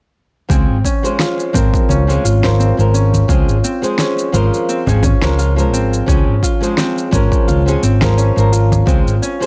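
At 86 BPM in 4/4 with a gentle sixteenth-note swing, a punchy overdriven electronic kick and a fat, overdriven snare with shaker set an easy groove, while very quiet, close and dry congas join at 1.6 s. A dark, round fretless electric bass sits up front with a lush chorus, beneath a boxy fingerpicked flamenco guitar, complete with finger squeak, and a ringing Celtic harp playing arpeggios through a low-pass filter, both carried on tape echo. This smooth, sunny chillout excerpt in Db major rests on a single Dbmaj7 chord in a small room with light reverb.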